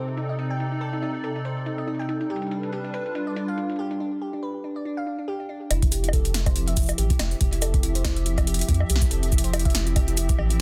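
Wistful and glitchy, this IDM excerpt moves at 141 BPM in F lydian with a 16th-note swing, opening on a hollow, flute-like pad with ensemble chorus and sidechain pumping, a ringing harp-like synth pluck playing arpeggios through chorus and tape echo, and an analog drum machine of bongos, shaker, metallic hats and a punchy snare, each muffled by low-pass filtering. After a break from 4.0 s, a round, dark analog bass and a deep, tape-warm electronic kick arrive at about 5.7 s as the harmony settles from Cm6 and G7 onto Fmaj7sus2. The sound sits in light reverb under a dense, heavily limited modern master.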